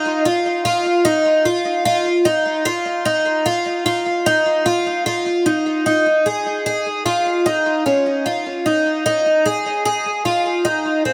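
A picked twelve-string acoustic guitar plays alone and up front from the first moment, its bright, fresh strings ringing with an octave-doubled shimmer. The ethereal, haunting dream pop fragment moves at an unhurried 75 BPM in a straight 4/4, shifting into a new section at 5.9 s before it cuts off at 11.1 s. Subtle chorus and tape echo color the guitar, and a moderate plate reverb with a long 2.9-second tail leaves the whole mix echo-heavy.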